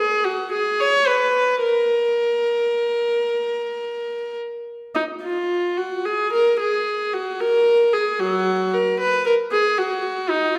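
A recital hall bathes this short passage in lingering reverb, while a single viola sits close and up front, its gut-string tone rich and reedy with an airy bow. The classical, baroque-style suite movement for unaccompanied viola moves in an introspective, flowing 3/4 with rubato, played in period style and ranging from Gb3 to Db5. It is cut from a longer piece and lasts 10.6 seconds.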